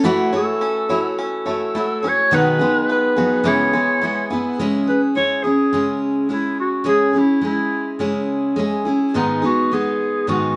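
Tender and wistful, this short acoustic pop excerpt in C# minor moves at 106 BPM in a straight 4/4, with a full-bodied jumbo steel-string guitar picking the accompaniment up front, finger squeak audible, while a twangy, fingerpicked bluegrass banjo adds percussive arpeggios until 5.1 s. A breathy clarinet enters at 0.4 s to carry the melody in a jazz-style subtone, its soft attack and vibrato giving it a vintage, clear voice as the harmony shifts from F#m7 through G#m7/B and C#m7 into C#m and G#m. The band sounds as if playing live together in a small room with a wet reverb and a gently rounded top end.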